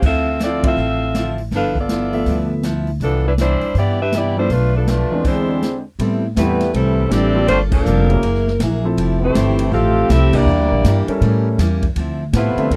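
Big band swing full of brassy joy, with a mellow, tight saxophone section carrying the melody up front over woody, growly upright bass, a punchy-kicked drum kit, a warm concert grand piano entering at 0.6 s and a bright, boxy picked acoustic guitar in the background, while band accents punctuate the groove and a brief stop at 5.2 s brings in a clear trombone section on a second line, all captured in a dry, close 1970s-style studio sound.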